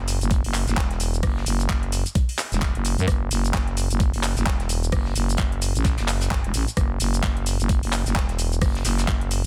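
A growling, thick FM bass with sidechain pumping leads this swaggering, gritty bass house excerpt at 130 BPM with a 16th-note swing, backed by an up-front knocking electronic kick with studio reverb, a tape-warm garage kit of handclaps, metallic hats, rim click and shaker with soft clipping on the snare, and a very quiet, dark vintage brush kit of hi-hat and snare, in a dense, heavily limited modern master.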